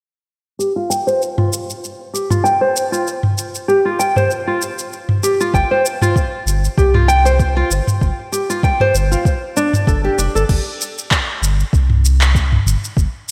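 Organic downtempo with a mystical mood, swung lightly on the sixteenths and cut from a longer piece. A fingerpicked nylon-string guitar carries classical-style arpeggios up front, run through a low-pass filter and delay with a filter sweep across its span, until it stops at 10.4 seconds. An organic electronic drum kit of crash cymbal, handclaps, shaker and toms sits close in the mix with studio and gated reverb, playing through to the end. At 5.5 seconds a round, sine-like sub bass with a fast attack and sustained, mellow tone arrives with sidechain pumping, joined by a soft electronic kick treated with studio reverb. The harmony moves from Fsus2 to a rootless Dm7/G and settles on Gsus4 in the closing section. A lush hall reverb and bright 1980s-style digital production give the whole a spacious, glossy sheen.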